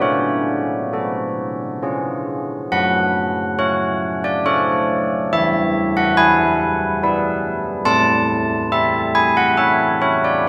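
A classical tune for church bells in F# minor, this wintry, solemn passage moves at a stately 70 BPM in 3/4, cut from a longer piece. A solo carillon sits up front, its bronze tone ringing with a minor-third overtone and the strike of an iron clapper as it spans E3 to A5. A moderate reverb with a 1.7-second tail surrounds the bells, and after an opening on F#m over C# that settles on C#, a new phrase begins at 2.7 seconds and moves from F#m through E to A.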